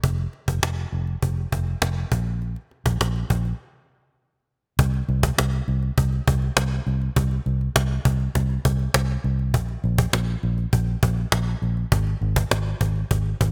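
A bright, 1980s-style digital production with small room ambience frames this moody, dramatic pop excerpt at 101 BPM in a straight 4/4. A dark, round, foam-muted electric bass sits up front in the low register, paired with a close and dry cajon whose woody tone carries faint snares, both playing throughout. A break from 3.6 to 4.8 seconds marks the turn into a new section that runs to the end at 13.5 seconds.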